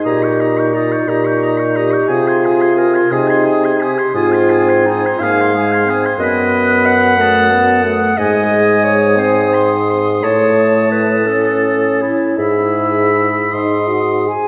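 A rubato 6/8 lilt at 52-61 BPM in dotted quarters carries this solemn, elegiac slow romantic movement for wind quintet in Ab major, an excerpt cut from a longer piece. A pure, soft-attacked silver concert flute with vibrato sings the melody over a distant, roomy oboe second line, while clear French horn and clarinet fill in the accompaniment and a mellow, punchy bassoon sits up front on the bass. The ensemble is heard from further back in a wet scoring stage reverb, and the harmony drifts through rich chromatic turns before settling on G# at 13.5 seconds.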